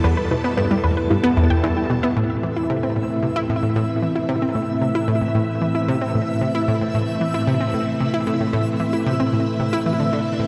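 Cosmic and mysterious, this excerpt of ambient, sequencer-driven space music moves at 113 BPM in a straight 4/4, set in A minor and bathed in a vast cathedral reverb with a long 6.7-second tail. A vintage string machine holds lush, full-bodied sustained chords up front, its mellow sawtooth tone thickened by a sub octave, a moving notch and ensemble chorus, shifting from Em to Amadd9 at 2.2 seconds. Alongside it, a round, bright analog pluck drives a low riff throughout, its detuned sawtooth and pulse waves given a fast attack, short decay, chorus and tape echo. A punchy, ring-modulated unison pluck plays arpeggios in the background with tape echo, stopping at 2.1 seconds. From 2.3 seconds a twinkling granular texture adds a sparkling, octave-up FM shimmer on a single high E, its soft attack and long release carried by its own built-in reverb.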